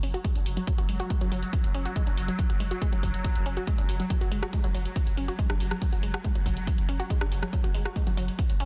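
Dark and intense, this driving peak-time techno runs at 140 BPM in a straight 4/4, cut from a longer piece and centred on F#. A heavy, layered electronic kick, re-recorded in a large room, sits at the front from 0.2 seconds, alongside a drum kit of hi-hat and rim click that is already playing from the start and carries the same roomy, produced character. Beneath it, a deep, round sine sub bass holds F#1 with a fast attack and long sustain, roughened by overdrive, darkened by a low-pass filter and pumping against the kick. A punchy, warbling unison pluck riff moves between F#3 and F#4, its detuned sawtooth and wave-folded tone given a vintage edge by tube saturation, tape echo, a filter sweep and its own sidechain pumping. Underneath, a swarming, tense drone on F#3 evolves slowly, its ring-modulated, granular texture bathed in reverb and breathing with the pump. The whole sits in a digital ambience with a dense, heavily limited modern master.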